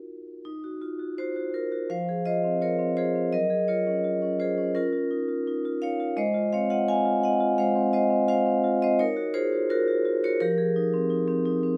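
Closely recorded with detailed microphones and a light reverb, this brief cut from a longer contemporary classical piece for solo vibraphone drifts at a rubato 84 BPM in 4/4 and Eb dorian, its hypnotic, reflective mood carried by a dark, smooth, metallic ring from medium hard mallets with the motor off, played up front across a range from F3 to Ab5 as the harmony moves from Ebmadd9 through Gbmaj9 and Db69 before closing on Fm11 at 10.4 seconds.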